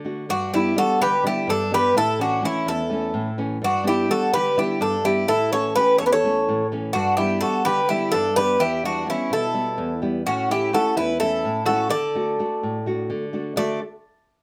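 In a straight 7/8 lilt, this bright, joyful Greek folk excerpt from a longer piece features a bouzouki band in a moderate studio room. The lead bouzouki carries the melody up front from 0.3 s with a picked, metallic tone and octave-doubled strings, while a second, mellower bouzouki plays a supporting line beneath it. A dark, up-front nylon-string guitar fingerpicks the classical accompaniment with audible finger squeak as the chords move between G and A before closing through Em, A and D.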